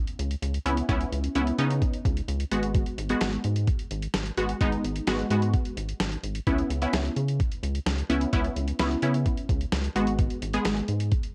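Cut from a longer piece, this home cassette recording has a light reverb. It is a driving, nocturnal synth-pop passage in C# minor at 129 BPM in a straight 4/4, moving between C#m7 and G#m7. A lush, detuned sawtooth unison pluck opens at 0.0 seconds, bright and punchy with a fast attack, a decaying tail, a filter sweep and a phaser coloring its notes. A sampler-style boom bap drum kit joins at 0.1 seconds, compressed, pitched down and gritty, with a thumpy kick, a medium-tuned snare and hi-hat, all given a cassette tape treatment. At 0.2 seconds a rubbery, hollow square-wave bass enters with a dark, bouncy, wave-folded and resonant tone, its filter pluck and fast attack giving way to sustained notes. The pluck, drums and bass all sit up front in the mix.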